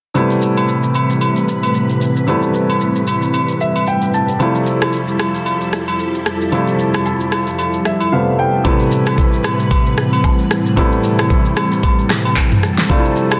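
A warm baby grand piano sits up front with fills at 3.3 and 7.6 seconds, over organ-like, softly attacked ensemble-chorused string chords, a produced R&B kit with a knocking kick and fat, softly clipped snare, and small-room agogo bells and woodblock, giving this late-night, deep amapiano excerpt a lush hall glow and a dense, heavily limited sheen.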